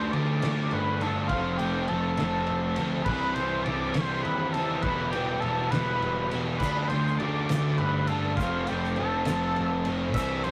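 Moody and restless, this indie rock excerpt in 6/8 pairs an up-front raw garage guitar riff with a crunchy overdriven guitar tucked in the background, while a punchy fuzz-picked electric bass growls beneath and a cloth-damped, thuddy drum kit adds a fat snare, tight kick and dark cymbals. Above them floats a hollow, full-bodied lead with an added fifth, carrying the melody with chorus, vibrato and analog delay over a Dm, F, C, Em progression. A grainy egg shaker sits distantly from 6.6 s, and the whole thing has the rough, tube-saturated feel of a rehearsal room with a short, wet booth ambience.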